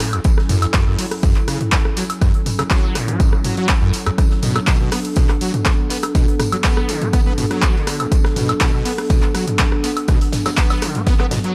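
A driving acid house groove at 122 BPM in a straight 4/4, built on an overdriven, punchy electronic kick that sits up front from 0.2 seconds, alongside an analog drum machine of handclaps, hi-hat, rim click, toms and woodblock, likewise overdriven and touched with dub echo. Further back, a big-room acoustic kit adds hi-hat, a medium-tuned snare and tambourine, its hats and percussion pumping against the kick and thinned by high-pass filtering. A squelchy, resonant sawtooth acid bass plays the riff with a filter sweep, fast attack and decaying notes, its bright edge thickened by tube saturation, ensemble chorus and analog delay, and pumping in time with the beat. Alongside it, a warbling, detuned, lo-fi pad of square and triangle tones holds slow-attack chords with a long release, its dark, nostalgic haze carried by chorus and built-in reverb and breathing with sidechain pumping. The harmony moves from F#m7 to Bm7 at 4.2 seconds, and the trippy, echo-heavy mix sits in a small room reverb, cut from a longer piece.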